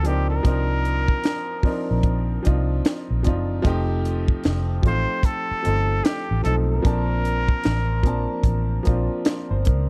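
A straight-muted trumpet, clear baby grand piano, foam-muted fingered electric bass and tight funk drum kit open this short neo-soul excerpt together at a relaxed 75 BPM with a 16th-note swing, moving through Cm11, F9 and Bbmaj9 in C dorian for an introspective, smooth mood. The close-miked trumpet carries a nasal, breathy jazz melody with light vibrato and soft attacks before dropping out at 9.0 seconds, while the piano accompanies with long sustain and audible action noise. Up front, the round, punchy bass and the dry kit of finger snaps, hi-hat, kick and high-tuned snare sit within a dark production bathed in studio reverb.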